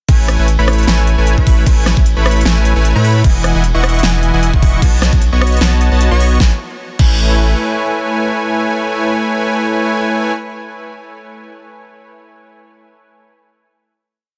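Lush and euphoric, this short future bass piece rides a swung half-time drop where a fat, detuned sawtooth polysynth pumps dotted-rhythm chords with tremolo and tape echo over a deep, saturated sine sub bass locked to the chord rhythm, a knocking up-front electronic kick, and a layered big-room kit of huge snare, crisp hat rolls, rim clicks and crashes, until the drums drop out at 7.1 seconds and the sub bass at 7.5 seconds, leaving the synth's final chord to ring alone to 10.3 seconds in a dry, dense, heavily limited mix.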